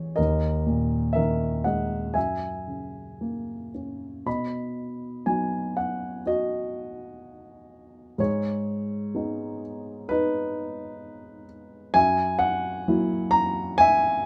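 A dark, mellow baby grand piano sits up front in this brief excerpt of lyrical classical solo piano, its short sustain lending a dark, melancholic mood. Played with rubato at a slow 55-66 BPM in 4/4, it moves from D#sus4 and F#7 into B major at 4.3 seconds, then through G#m and back to F#7 at 12.0 seconds. A moderate small-room reverb gives the instrument an intimate, close setting.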